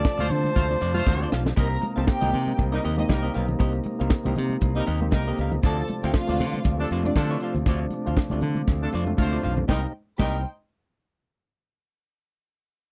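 A dry, close recording in a 1970s studio style carries this glamorous, driving disco excerpt, built on a swung sixteenth feel over Dm7 and Cm7 chords. A clear, punchy flugelhorn with scooped notes states the melody only until 1.3 seconds, as a band accent opens the passage and a drum fill arrives at 1.1 seconds, while a tight funk drum kit with a high-tuned snare and a bright fingered electric bass sit up front. Alongside them from the start play dark, lush bowed strings, a reedy electric piano with fast tremolo in the background, a clean semi-hollow guitar, and a gritty overdriven tonewheel organ holding very quiet chords. A distant, roomy horn section adds stabs and damped, high-tuned congas join, both entering at 0.2 seconds, and another drum fill arrives at 8.7 seconds.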